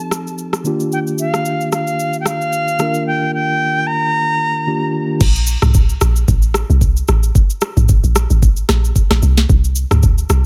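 A bright, reedy flute with vibrato carries the melody over a mellow tine electric piano under a filter sweep, while a smooth, electronic R&B kit with a knocking kick, sharp snare, rim clicks and shaker sets up a soulful amapiano groove with a light swing. At 5.2 seconds the opening gives way to a drop, where the flute and piano have stopped and a deep, round log drum bass with a dark, percussive fast attack takes over beneath the drums. The whole short, warm fragment sits in a digital ambience, with every part up front.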